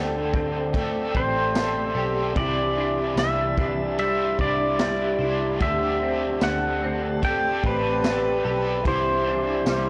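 A straight 4/4 pulse at 74 BPM carries this floating, blissful dream pop passage, cut from a longer piece, with a vintage drum kit entering at 0.3 seconds on punchy kick, high-tuned snare, tambourine and a dark ride cymbal, its top end rolled off in a natural studio room. Beneath it, a round, foam-muted picked bass sits low and amped. The harmony moves between D7sus4 and Cadd9: a soft, flute-like tonewheel organ holds sustained chords through a fast rotary speaker, an overdriven electric guitar adds bright, compressed accompaniment shimmering with harmonic tremolo and lush chorus, and a clean semi-hollow guitar picks hollow-toned arpeggios in the background, colored by ensemble chorus and tape echo. At 1.2 seconds a twangy pedal steel takes the melody up front, played with fingerpicks and slide, its volume swells trailing tape echo. The whole is framed in a small room and a dry, gritty cassette-tape recording.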